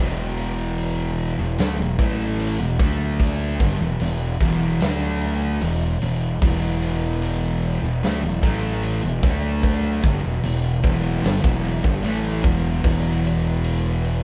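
Stoner and doom metal at a slow 75 BPM in E minor, this ominous, hypnotic excerpt pairs two dark, distorted fuzz guitars grinding through a riff over E5, D5 and Em chords, one up front and one in the background, with a round, overdriven fingered bass and a big, punchy acoustic drum kit carrying bright cymbals and gritty 12-bit sampler texture that enters at 0.4 seconds, all captured as a band playing live in one room with moderate reverb.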